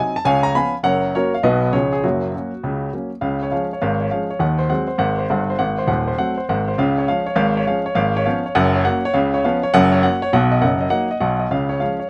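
Stride piano jazz, swinging and exuberant, features a solo upright piano with a woody, intimate tone, audible action noise and an up-front presence in light reverb, ranging from Eb1 to B5 as it moves from a brief opening passage into a longer second section that shifts harmonic center at 3.2 seconds before returning home at 8.0 seconds in this clip cut from a longer piece.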